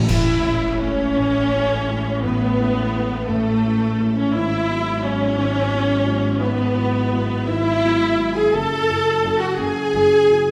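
A soft, felt-muted upright piano opens this short excerpt from a cinematic film score. The orchestra joins at 0.1 s with an accent of bright clash cymbals and concert bass drum, and that percussion is gone by 1.5 s. The music is uplifting and moving, a slow, rubato 6/8 in A major at about 57 BPM, passing through Amaj7, Eadd9/G# and F#m7. Two violin sections carry the upper parts: a very quiet, smooth melody line and a focused second line in the background. Beneath them sits an up-front, lush viola section, with a distant, roomy French horn section holding dark sustained chords. A clear double bass section and a very quiet, distant cello section anchor the bass, and the strings and horns bloom in a generous concert-hall reverb.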